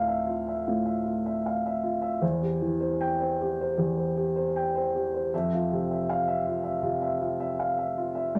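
A lone upright piano opens on a Dmadd9 chord, its woody, open tone carrying a melancholic, intimate mood in this short neoclassical minimalist fragment at 78 BPM, played rubato in 4/4. The harmony moves to C/E at 2.2 seconds and settles on a bare F5 at 5.3 seconds, with the part ranging from D2 to G5. A wet studio reverb places the instrument a little further back in the room.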